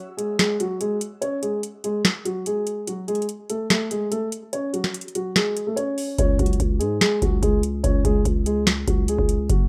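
A booming analog drum machine with a deep kick, crisp snare and metallic hats sits up front alongside a dark, boxy concert grand piano melody in this menacing, hard-hitting half-time trap excerpt, with the kick dropping out at 4.5 seconds before a growling, buzzy 808-style bass arrives at 6.2 seconds in a rough home demo mix with digital ambience.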